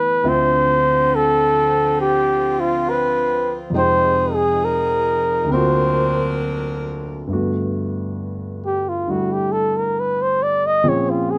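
A mellow, softly attacked flugelhorn with light vibrato sings the melody up front in this late-night, romantic swung jazz ballad, over a natural-sounding grand piano accompaniment and bright, sustained saxophone-section chords that drop away at 7.3 s as the flugelhorn moves into its solo through 11.4 s, all captured dry and close with fine detail in this brief cut from a longer piece.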